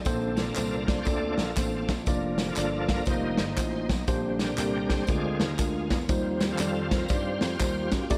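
Reverent and uplifting, this short uptempo gospel excerpt swings at 119 BPM in Bb major, moving through rich chords from Bbmaj9 to Eb69 over about 8 seconds. A bright, shouting tonewheel organ takes the solo throughout, lightly overdriven with key click, chorus vibrato and a slow rotary speaker, over a mellow tine electric piano heard through its built-in speakers and a punchy, foam-muted thumbed slap bass. An up-front soul drum kit with a tight kick and rolled-off top joins tambourine, tube shaker and group handclaps carrying a slapback echo, all set in a big arena-like concert hall reverb.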